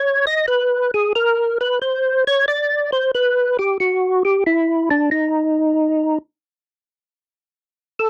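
A dry, close 1970s-style studio sound puts a fat, clean tonewheel organ up front for this greasy, swinging jazz fragment at 91 BPM in 4/4, its percussive third-harmonic attack, chorus vibrato and slow rotary speaker carrying a solo line between D4 and Eb5 for the full 8.1 seconds.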